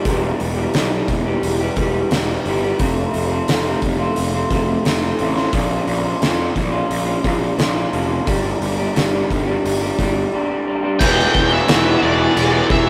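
Cut from a longer brooding, cathartic alternative rock piece at 88 BPM in E phrygian, this opens with dark, lo-fi arpeggios from an electric guitar through a small old amp bathed in spring reverb. A growly overdriven fuzz bass and an oversized low-tuned acoustic drum kit follow, its punchy kick, fat snare and dark cymbals gritty and pumping in a stone room. At 11.0 seconds the arpeggios stop and the quiet-loud shift hits: two bright, picked distorted guitars grind out a riff in the background, one scooped and compressed, while an octave-fuzz lead guitar carries a high melody, all heard in a rough rehearsal-room recording with saturated tone.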